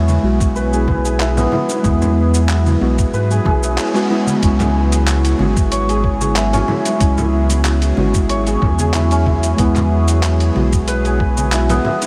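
A dreamy, reverb-soaked mix with a huge ambient space sets the tone for this short cut from a longer organic downtempo piece in C# minor, moving at 93 BPM in 4/4 with a light swing on the sixteenths and a warm, earthy mood. A deep, round sine sub bass sits up front with sidechain pumping, joined from 0.4 seconds by a gritty, thumpy electronic kick with a tape-tinged, compressed sampler character, while a dusty soul sampler-style kit of cabasa, handclaps and hi-hat adds texture alongside bright, vintage congas and bongos played with hard hands in the background. Over this, a hammered santur rings and shimmers in arpeggios through an analog delay, and muted, felt-like synth keys supply dark, intimate accompaniment colored by chorus, delay and the same pumping. Alongside the melodic parts, a very quiet, tense, string-like drone holds sustained chords with slow attack and vibrato. The harmony rests on E before shifting to C#m at 4.4 seconds, just after a faint electronic swell and a brief band accent around 3.8 seconds mark the turn, then returns to E at 9.6 seconds.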